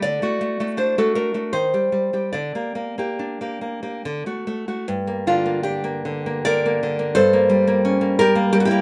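Passionate and wistful, this brief excerpt from a longer romantic piece for solo classical guitar moves with a rubato lilt in 3/4, its bright, fingerpicked nylon-string guitar sitting up front in light reverb, with finger squeaks audible as the harmony drifts from D through Gm to a Gdim chord near 7.2 seconds.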